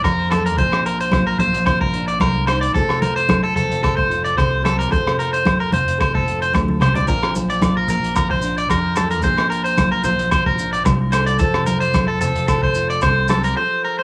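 Warm and carefree, this excerpt of a highlife guitar band at 111 BPM in Bb major puts a bright, twangy, slightly broken-up electric guitar playing arpeggios up front with tape echo, over a fingerpicked flamenco guitar accompaniment with finger squeak, a round, dark fingered electric bass, a gritty, saturated breakbeat drum kit with a punchy kick and rolled-off top, ringing agogo bells and medium-tuned, close, dry congas in the background, while grainy maracas join at 7.1 s after a drum fill and a brief break closes the home cassette recording.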